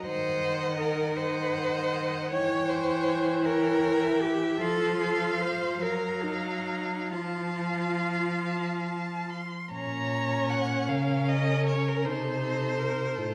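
A slow, rubato 6/8 sway of 44-55 BPM in dotted quarters carries this yearning, melancholic classical movement for string quartet in Bb minor, tuned to A4 = 438 Hz and cut from a longer piece. The first violin sings the expressive melody with vibrato and portamento, the second violin adds a focused second line, and both sound distant beside the smooth, even viola accompaniment and the warm, soft-attacked cello bass, which also slides expressively and sits close and up front. A wet recital-hall reverb of 1.3 s wraps the ensemble, and the harmony moves through diminished colours and a Gbmaj7, reaching Bbm at 9.7 s and then turning to F7/C.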